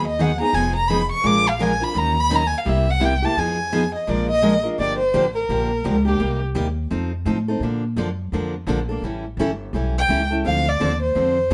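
Fiery yet bittersweet, this short cut of acoustic string swing in the jazz manouche style features an up-front bowed violin, expressive with vibrato, portamento and a soft attack, carrying the melody as a solo until 4.8 s, falling silent at 6.4 s and returning briefly at 10.0 s. Beneath it, a bright steel-string guitar with fresh strings and audible finger squeak picks out the accompaniment throughout, while a second, full-bodied jumbo guitar sits in the background, dropping out at 4.5 s and rejoining near the close. A dark, woody, thumpy pizzicato upright bass on gut strings anchors the band, heard together in one room with moderate reverb as the harmony moves through minor-seventh and dominant chords.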